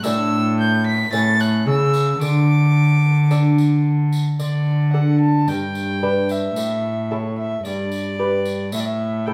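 Classical renaissance-style consort dance, courtly and stately in a straight 4/4, in which a nasal, reedy gut-string violin carries the melody over a delicate fingerpicked lute with double strings, while a clear, up-front cello with light vibrato holds the bass and a jingly, distant tambourine sits back in a wet stone room heard from further away.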